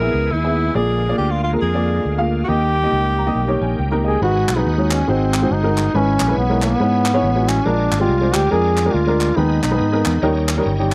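Soulful and solemn, this uptempo gospel passage swings at 139 BPM, opening with a breathy, whispered tenor saxophone melody with scooped notes over worn, slightly detuned upright piano, a bright tonewheel organ holding chords through slow rotary speaker, light overdrive and chorus vibrato, and a punchy, up-front fingered electric bass. After a piano fill, a smooth, folk-style duduk takes over the melody at 4.1 s, the music settles into G# minor at 4.2 s, and crisp group handclaps join at 4.5 s. The dry, close sound recalls a 1970s studio, and the passage is cut from a longer piece.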